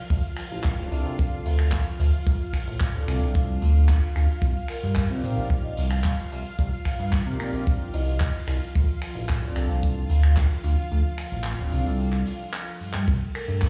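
This short cut sounds as if it were played over a big sound system in a bare stone room, with the reverb hanging on everything that reaches the walls. It is a sensual, groovy nu-disco piece at 111 BPM in a straight 4/4, rocking between Dm7 and Cm7 before landing on C7(no3). A dry, tight acoustic kick sits up front beside a dark, glossy chorused synth bass whose pulse and sawtooth tones evolve under a filter sweep and a moving notch. A tight, dry funk kit adds finger snaps, handclaps and hi-hat, with a very quiet, close tambourine underneath. A lush vintage string machine holds full chords with ensemble chorus and sidechain pumping, while a warm, mellow analog pad adds chorus and tape echo. A metallic, ringing vibraphone with dub echo enters in the background at 4.7 seconds for a brief melody, and a break at 10.9 seconds leads to a drum fill at 12.5 seconds.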